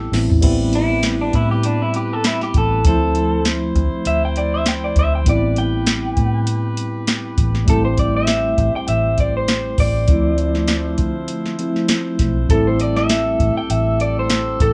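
An up-front, slightly broken-up electric guitar through a small old amp carries a picked, compressed, lo-fi solo line from 0.8 seconds in this mournful, brooding straight-eighth soul blues cut from a longer piece, after a soft analog rhythm box opens with a brief fill at 0.1 seconds and then keeps time with a deep kick, crisp snare and metallic hats beneath a tine electric piano heard through its built-in speakers, bright and punchy sustained horn-section chords, and a dark, round, foam-muted fingered bass, as the band plays together in one room under a moderate large-studio reverb.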